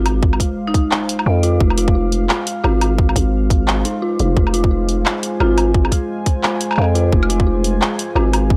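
A deep, moody ambient pad anchors this heavy, cinematic half-time drum and bass excerpt in F minor at 174 BPM, sustaining a single F minor chord with a slow attack, chorus and its own reverb, and pumping against the beat. An eerie, inharmonic synth bell traces detuned arpeggios across the whole passage through chorus and tape echo, while a woody, airy marimba in the background plays brief melodic fragments through tape echo, first until 1.0 s and again near 5.4 s. Underneath, a growling, buzzy 808-style bass sits up front with a saturated, decaying tone. The drums are layered: a tight, overdriven electronic kick arrives at 0.2 s, and a kit with bright hi-hats, handclaps and woodblock, re-recorded in a small room, lightly swings its sixteenths in the half-time feel. The whole track has a dry, gritty hardware character with light digital ambience, and it is loud.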